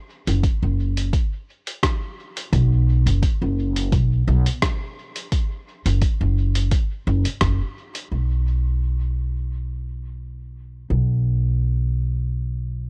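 Hazy and spacious, this short ambient dub cut from a longer piece pairs a woody, thumpy pizzicato upright bass held up front in a dry space with a deep, layered electronic kick and a muffled, overdriven, pitched-down sampler-style kit of hi-hat and rim click trailing dub echo, until the drums drop away by 8.1 seconds and the bass carries on alone to 12.9 seconds.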